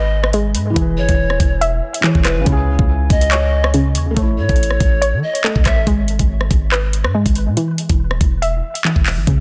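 A half-time drill pulse at 141 BPM in 4/4 drives this tense, cold hip hop excerpt in G# phrygian, with the drum kit entering at 0.2 seconds: a knocking kick, metallic hi-hats, handclaps and rim clicks, electronic and sitting up front in the mix. Beneath it, a hard-hitting 808-style bass delivers punchy, heavy sine tones with a noise layer and a fast, decaying attack. A warbly, dusty pluck carries the arpeggios, its detuned sawtooth tone lo-fi and mellow, with chorus, tape echo and a filter sweep. Over the opening chords of G#m, E, C#m and A, a breathy pan flute adds a second line with vibrato, a soft attack and tape echo, while a felt-muted upright piano gives dark, intimate accompaniment, its thick felt and audible action noise part of the sound. Both flute and piano drop out at 5.9 seconds, leaving the pluck, bass and drums to move through a return to G#m before the harmony falls away at 7.6 seconds. 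Light digital reverb surrounds a dense, heavily limited modern master.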